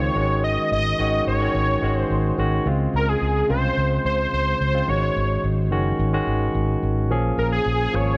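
A light reverb and digital ambience give this short cut from a longer 1980s-style pop piece a glossy, romantic sheen, with all three parts sitting up front. At 108 BPM in a straight 4/4 feel in Db major, a thick, bright unison lead built from detuned sawtooth and triangle tones carries the melody within a range of Ab4 to Eb5, its fast attack giving way to sustained notes coloured with vibrato. Beneath it, a barky, clean tine electric piano heard through a combo amp supplies the accompaniment. A punchy, amped fretless electric bass with ensemble chorus holds the low end, ending at 8.1 s just before the other parts. The harmony moves from Ab7sus4 to Dbmaj7 at 2.7 s, where a new section begins, then returns to Ab7sus4 and settles on Bbm7.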